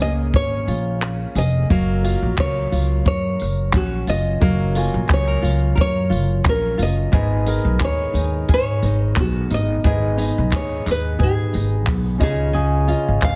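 A lightly swung sixteenth-note groove in 4/4 drives this wistful, reflective acoustic pop fragment, where a fingerpicked nylon-string guitar carries the melody with audible finger squeak over a bright, full-bodied second nylon-string guitar, an open-sounding concert grand piano with deep bass, a thumpy, woody pizzicato upright bass up front, and a dry, tight compact cocktail kit of kick, tambourine and handclaps, joined at 1.0 s by a barely audible crisp group handclap, all under light reverb and a heavily compressed radio sound.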